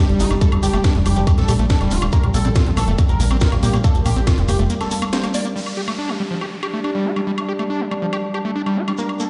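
A squelchy, screaming distorted acid riff, a thick, nasal detuned unison lead with vibrato, a resonant overtone-sweeping drone and a lo-fi, nostalgic tape-like pad, each sidechain-pumped, open this driving, intense psychedelic trance excerpt at 140 BPM in straight 4/4. They are soon joined by a punchy, funky plucky analog bass, a tight overdriven electronic kick up front, an overdriven drum-and-bass kit of cracking snare, bright hats and woodblock, and a grainy background shekere. A break at 4.7 s with a band accent at 5.1 s gives way to an electronic downlifter from 5.6 s over the drone, acid line, pad and drum kit, all set in a bare room with large studio reverb.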